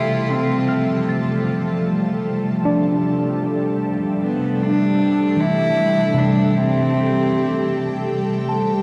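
Ambient and serene, this reflective excerpt rests on a single Fadd9 chord, with an ethereal, airy pad holding sustained chords through chorus, phaser and its own reverb while a worn, slightly out-of-tune electric piano, lightly overdriven and sounding through built-in speakers, spins arpeggios with tape echo. A rich, nasal cello played by one bowed player with light vibrato carries the melody until 8.1 seconds, its tape echo blending into the dark production. A huge reverb with a 7.5-second tail bathes the whole piece in a deep, lingering space.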